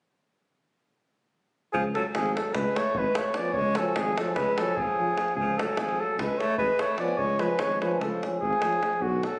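Balkan brass band folk in a bittersweet, virtuosic 9/8, this excerpt from a longer piece puts a smooth-topped, classical-style flugelhorn up front on the melody from 1.7 seconds, with a clear alto saxophone adding a jazz-inflected second line with vibrato and scooped notes, a dark tuba on the bass and a tight, close, dry davul, while a distant, roomy French horn with light vibrato and a warm euphonium join as accompaniment at 3.4 seconds, the performance captured on a phone in a recital hall with moderate reverb and compression.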